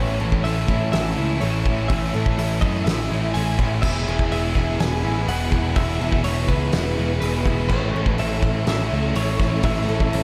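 Soaked in church-like reverb, this hazy, blissful shoegaze and dream pop excerpt at 124 BPM in A major moves from Amaj7 to E and back, as a compressed clean electric guitar carries the melody through vibrato and diffuse delay over a swirling, phased string machine and a very quiet, shimmering twelve-string acoustic guitar picking arpeggios, while two overdriven guitars in the background play a riff, one biting with ensemble chorus and one crunchy with reverse reverb, a growling overdriven bass sits up front, and a loose, roomy indie drum kit with dark cymbals and a fat snare enters at 0.3 seconds.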